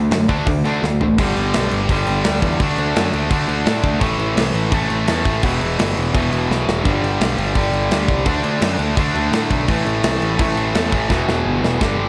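A big arena sound, lifted by moderate hall reverb over a small-room ambience, frames this upbeat, rebellious punk rock excerpt, driving straight at 169 BPM in G major. Bright, double-tracked overdriven electric guitar sits up front with a picked riff over chords moving through G5, D5, A5 and E5, alongside a growly fuzz bass with overdrive and a tight metal drum kit whose medium-tuned snare, kick, hi-hat, crash and toms sit mid-forward. Drum fills fall at 0.8, 6.5 and 11.1 seconds, the last arriving under an E minor chord.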